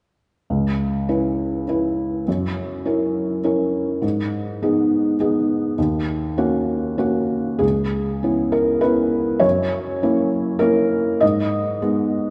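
Neoclassical minimalist piano in C# dorian, tuned to A4 = 438 Hz, moving in a rubato 3/4 at around 101 BPM with a wistful, intimate mood in this short cut from a longer piece. A felt-muted upright piano plays alone from 0.5 to 12.3 seconds, soft, mellow and up front, ranging from C#2 to D#5 through chords of C#m7, F#7, G#m and D#m7, then returning to C#m7 at 7.6 seconds for a second passage. A wet scoring-stage reverb with a two-second tail surrounds it, and the sound's top end stops at around 10.4 kHz.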